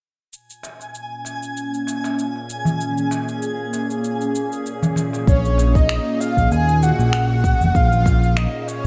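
Mystical, warm organic downtempo at 97 BPM in a swung 4/4 over Bbm7, where a warbling, nostalgic lo-fi pad with chorus, phaser and sidechain pumping meets electronic cabasa and finger snaps, a distant clay-shell darbuka and a twinkling granular shimmer until, at 5.3 seconds, a breathy flute-like synth lead with ensemble chorus and digital delay arrives with a smooth, up-front synth bass and a deep electronic kick, all within a lush hall reverb in this excerpt.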